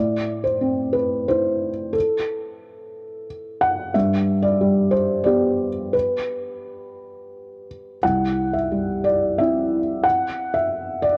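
Neoclassical minimalist piano in an intimate, reflective mood: a felt-muted upright plays alone in a rubato 3/4, moving from Amadd9 to G at 3.9 seconds and on to C at 8.0 seconds in this brief 11.2-second fragment of a longer piece. The piano sits up front with a dark, thick-felt tone, audible action noise and a cassette tape colour. A moderate spring reverb surrounds it in a homely space.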